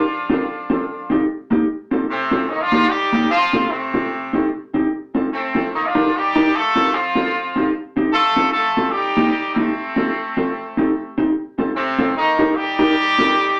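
Ska at 149 BPM in F mixolydian, upbeat and bouncy with a swung eighth-note feel, cut from a longer piece and cycling through F, Cm and Eb. A tight, clear horn section with light vibrato and octave doubling carries the melody up front, its vintage pop-style sound ranging from C3 to A4. Beside it, a mellow electric guitar, dark, clean and compressed, supplies fingered accompaniment through tape echo, all set in a wet small room with a short 0.5-second reverb.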